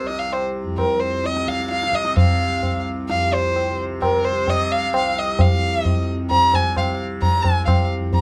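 A dark, lightly reverberant sound frames this short Hindustani classical excerpt in raga malkauns and a 7/4 metre, where a single bowed violin, nasal and boxy with smooth vibrato, carries an introspective, longing melody up front over a softly plucked, buzzing tanpura drone that shimmers beneath it, while high-tuned tabla with a short, dry ring enters at 0.1 seconds.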